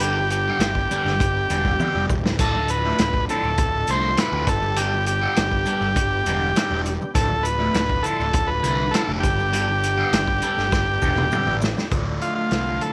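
Psychedelic rock at 101 BPM in straight 4/4 with a hypnotic, mysterious mood, this short excerpt sets an up-front, buzzy combo organ melody with tape echo and light vibrato over very quiet chorus-vibrato tonewheel organ chords, a bright double-tracked fuzz guitar riff with phaser, an overdriven picked fuzz bass, a punchy vintage drum kit with dark cymbals and fills at 1.8 and 10.7 seconds, and grainy maracas that drop out at 11.8 seconds, all cycling between G and Dm in a small room with light reverb.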